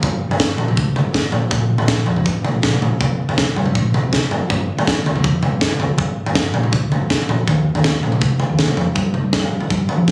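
A straight 4/4 pulse drives this short cut from a longer math rock and midwest emo piece at 161 BPM, its mood playful and bright, with tuning set slightly low at A4 = 435 Hz. A crisp acoustic fusion kit sits up front, pairing a punchy kick and a high-tuned snare with toms in a small, pumping room. Beneath it, a fingered hollow-body short-scale electric bass runs through an amp with a dark, round tone, moving between F1 and F3. Both parts play together from the opening to the close at 10.1 seconds, with a new section arriving at 9.0 seconds. The sound carries a moderate studio reverb over a phone recording made in the room.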